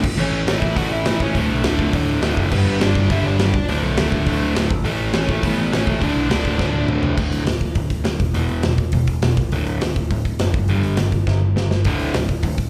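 Punk rock at 206 BPM in a straight 4/4, rebellious and rowdy, heard as a live gig through a club PA with light reverb and cut from a longer piece. An up-front, hollow-bodied overdriven semi-hollow guitar with slapback echo drives the riff alongside a bright, distorted rhythm guitar sitting in the background, which drops out at 7.2 seconds and returns briefly at 11.9, while a growly, punchy picked bass and a big acoustic kit with bright cymbals and a punchy kick hammer underneath. A dark, smooth lead guitar carries the melody from 0.2 to 6.9 seconds over chords moving from A through D5 and G, before the second half shifts to E5, D5 and G5, with drum fills arriving at 6.6 and 11.3 seconds.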